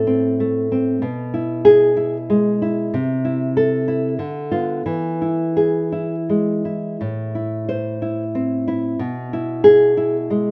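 A nylon-string guitar, dark in tone and thumb-plucked, sits up front in this short solo passage, played alone from 0.0 to 10.5 seconds across a range from A2 to C5. The piece is a melancholic, intimate romantic work for classical guitar in A minor, moving in 3/4 at roughly 83-97 BPM with a freely bending rubato feel. Its harmony circles around the home chord, passing through E over B, A minor over C, a diminished chord on B over D and E before returning to A minor and E over B near the close. Light reverb and a small room ambience surround the acoustic instrument, giving a close, personal sound. The rough home demo mix adds to the unpolished character of this excerpt, which is cut from a longer piece.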